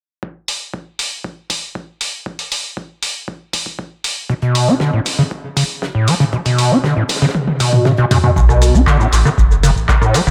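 An overdriven, deep electronic kick opens this gritty, hypnotic acid house excerpt in B minor at 118 BPM, soon joined by a punchy analog drum machine of handclaps, hi-hat, rim click, shaker and toms, while a squelchy, resonant square-wave acid bass enters at 4.3 seconds alongside a dark, dry soul kit of hi-hat, shaker and fat snare tucked in the background, and after a drum fill a round sine sub bass arrives at 8.4 seconds as the chord moves to B7(no3) and a filter sweeps the acid line, all within an echo-heavy mix touched by spring reverb.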